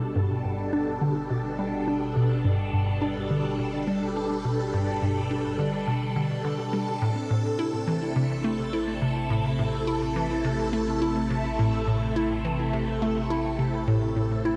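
A straight, steady 4/4 pulse drives this ambient, sequencer-driven space music, a luminous and cosmic passage cut from a longer piece. A hollow, bouncy square-wave pluck plays a riff throughout. Its detuned tone is shaped by a filter pluck and a moving notch, then thickened with chorus and tape echo. Alongside it, a phased string machine holds sustained chords with a swirling, vintage sawtooth sound, bright and up front, treated with ensemble chorus and phaser. Beneath both, a round, deep analog bass sits low in the mix and fades in across the whole 14.6 seconds, while the harmony moves from Gadd9 to Am at 7.0 seconds and a moderate plate reverb gives the dark production a long, spacious tail.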